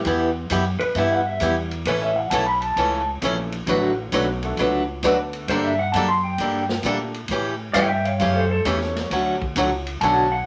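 A cheerful, playful western swing fragment in D major opens at 132 BPM with a worn, slightly detuned upright piano in the background, a thumpy gut-string upright bass played pizzicato, and a vintage drum kit with a punchy kick and rolled-off top, joined almost at once by an up-front, bright, boxy picked acoustic guitar whose finger squeaks come through in the swung feel. At 0.8 s a clean, compressed pedal steel guitar takes the lead, played with fingerpicks and slide and shaped with volume swells, sitting warm and forward over the band. A short studio reverb wraps the arrangement as the chords move from Em through A7 to a closing Dmaj7.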